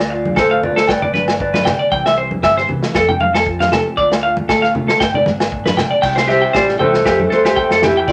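Highlife guitar band music, sunny and danceable, moves at 116 BPM in C major with a lightly swung sixteenth-note feel, cycling through Dm, G, C and Fadd9 in this short cut from a longer piece. Up front, a clean semi-hollow electric guitar plays arpeggios while a dark, mellow electric guitar carries the melody in brief phrases that return at 6.3 seconds. Underneath sit a full-bodied fingerpicked steel-string acoustic guitar, a round amped bass, a small-room vintage drum kit with a tight kick and rolled-off top, ringing congas and saturated agogo bells, with a distant, vibrato-tinged alto saxophone adding a jazz-style second line at the close, all in a wet, roomy reverb.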